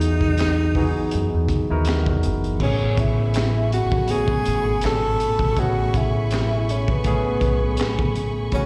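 A breathy, intimate tenor saxophone leads this short neo-soul and R&B fragment, carrying a mellow, whispered jazz-style melody with vibrato and a slapback echo, close-miked and up front. Beneath it, a barky tine electric piano heard through a combo amp supplies clean accompaniment. A deep, round dub bass played with the fingers sounds direct and amped, and a crunchy breakbeat kit adds punchy kick, high-tuned snare, hi-hat, handclaps and crash cymbal, saturated and gritty with a rolled-off top. The groove carries a gentle sixteenth-note swing and a sensual, relaxed mood. At 2.6 seconds the harmony moves from Emaj9 to Amaj9 as a dark studio string section enters softly beneath the other parts, its lush, woody bowed chords sustained with vibrato until the cut ends at 8.7 seconds. The mix sits in a small room ambience, like a live gig heard through a venue's PA with recital hall reverb.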